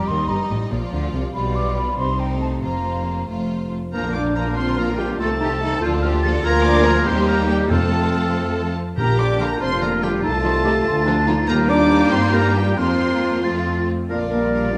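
Moving in a straight 6/8 at 94 BPM, this graceful, lively classical-period movement for symphony orchestra in Bb major opens with a distant, richly bowed violin melody over clear second violins, an airy silver flute, lush violas, smooth cellos and an up-front double bass section, before a mellow clarinet, a soft-edged oboe and a dark, tight horn section enter at 3.9 seconds, and calf-headed timpani sound briefly at 7.7 seconds, all set in a recital hall reverb with a tape-saturated production in this cut from a longer piece.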